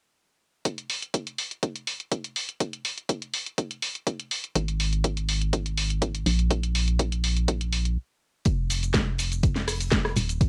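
Piano house with a bittersweet yet energetic mood, cut from a longer piece and set in a straight 4/4 feel. An overdriven, punchy analog kick and a layered garage kit of hi-hat, rim click, shaker and cracking snare enter together at 0.7 seconds, both sitting up front. A dark, hollow FM bass with an organ-like, percussive attack and sidechain pumping joins at 4.6 seconds, moving in a low register. After a brief stop, a very quiet acoustic studio kit with an airy, polished hi-hat and medium-tuned snare adds a faint layer from 8.5 seconds as a new section begins. The sound is dry, with the character of a home cassette recording.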